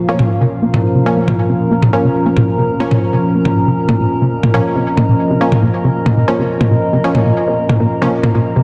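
A tight, detuned sawtooth sequenced synth riff drives this hypnotic, relentless peak-time techno excerpt in Bb minor at 138 BPM, its tube-saturated tone thrown into tape echo under a filter sweep, while layered electronic toms enter at 0.2 s, muted dub chord stabs carry 12-bit sampler grit, a deep, moody sub-octave drone sits beneath, and a warbling, nostalgic lo-fi pad floats above, all in a lush hall reverb and a dense, heavily limited master.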